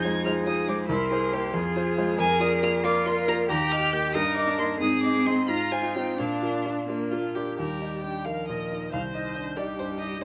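Rolling in a rubato 6/8 at 85-94 BPM in dotted quarters, this lively, spirited passage from a quick classical-period movement for piano quartet sits in Eb major, tuned to A4 = 438 Hz, and moves through F minor and C7 before settling onto Eb at 3.5 seconds. A focused, up-front violin with vibrato carries the melody as high as Ab6. Beneath it, a rich, close cello sings an even second line, a warm, smooth-topped viola bows even accompaniment, and a clear, intimate baby grand piano, its action noise audible, fills out the harmony. All of it sits in a light reverb, and a new section arrives at 7.6 seconds.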